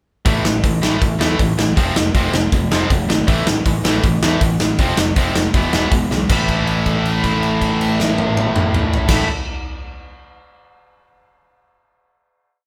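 Rowdy and rebellious, this short punk rock piece charges along at 159 BPM in a straight 4/4 feel in A major, played by a band together in one room with light reverb. Two bright electric guitars drive the riff with palm-muted eighth notes, one overdriven and sitting in the background, the other tight and distorted, while a growling picked bass, overdriven and direct and amped, pushes driving eighth notes from underneath. Up front, a big acoustic rock kit with a punchy kick, medium-tuned snare and bright cymbals carries a two-step groove across crash, hi-hat and toms. The verse cycles through A5 and F before touching E, and a drum fill at 6.1 seconds sets up a final A chord at 6.3 seconds. That chord rings out as a held note until about 9 seconds, closing the whole piece.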